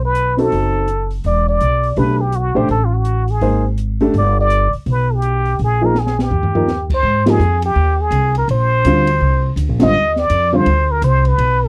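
A swinging 4/4 groove at 166 BPM drives this playful small-group swing and bop excerpt, where a breathy plunger-muted trumpet sits up front with wah-wah tone, scooped notes and light vibrato over woody, steel-strung pizzicato upright bass, warm baby grand piano accompaniment and a dark, smooth drum kit with a high-tuned snare and punchy kick, marked by a drum fill at 6.0 seconds and band accents at 7.2 and 9.8 seconds in a dry, close 1970s-style studio sound.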